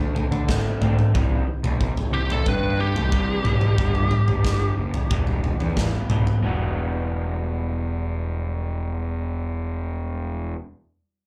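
Heard through a venue's PA with club ambience and light reverb, this angsty, brooding quiet-loud alternative rock excerpt sets lo-fi, slightly broken-up arpeggios from an electric guitar through a small old amp against a growly, up-front fuzz bass, while a huge arena drum kit with a punchy kick and medium-tuned snare plays until 6.4 seconds and a biting lead guitar, overdriven with tape echo, carries a short melody from 2.1 to 4.7 seconds.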